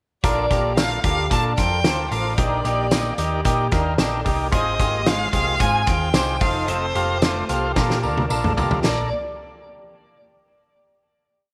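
Jangly indie pop at 111 BPM in Bb major, breezy and youthful, where a rich, smooth bowed violin carries a hook-driven melody with tape echo over a buzzy overdriven combo organ playing eighth-note chords, a twangy, slightly broken-up guitar ringing out arpeggios doubled in sixths through analog chorus, a round hollow-body picked bass with slides, a loose, roomy drum kit with a fat snare and dark cymbals driving a brisk backbeat, and a jingly tambourine on the backbeat from 0.5 seconds, all in a moderate echo chamber, with a drum fill at 7.8 seconds leading into the final chord at 8.8 seconds.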